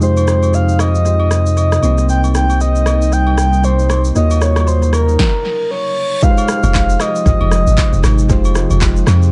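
An echo-heavy, dry and darkened mix carries this soulful, hypnotic amapiano excerpt in F minor at 116 BPM with a swung 16th feel, where a breathy flute-like synth lead with vibrato floats up front over soft, round electric-piano-like keys, a glassy FM pad pumping in the background, a deep house drum kit re-recorded in a small room, and close acoustic agogo bells and woodblock, while a punchy sub bass drops out at 5.2 seconds for a brief stop filled by a reverse cymbal; the chords return to Fm7 at 6.2 seconds, and a dark log drum bass enters at 6.6 seconds.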